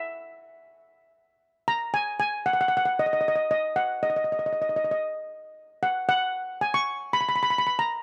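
A shimmering, metallic lead steel pan, struck with medium rubber sticks, plays alone across this carefree, festive 8-second calypso excerpt at 115 BPM in 4/4, ranging from D#5 to C#6 and sitting full and up front in a dry, close 1970s-style studio sound.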